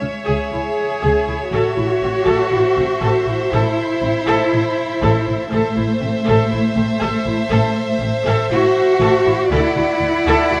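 A cinematic string passage, cut from a longer piece, with an uneasy, eerie mood over a slow, straight 4/4 pulse. Two chamber violin sections play with a soft attack and a sul tasto touch, one carrying a high melody with vibrato while the other holds a second line just beneath it with lighter vibrato, both sounding intimate and close. A studio viola section fills in the middle with a pure, floating accompaniment that sits at a distance. The dark, woody cello section enters at 0.5 s and stands up front with vibrato, while the double bass section anchors the low end with a smooth top. The harmony drifts from C#m to Am and settles on Dadd9 near the close, all bathed in a moderate concert hall reverb that gives the production a dusky glow.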